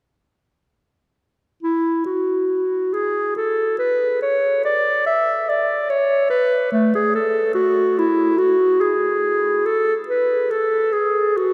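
Rubato phrasing stretches a 4/4 pulse of about 71 BPM in this radiant, dance-like classical fantasia in baroque style, cut from a longer piece and tuned to A4 = 441 Hz. A warm, close-miked solo clarinet sits up front from 1.6 to 11.5 s, moving between A3 and E5. A wet cathedral reverb with a 6.3-second decay surrounds it, giving the sense of a church or concert hall.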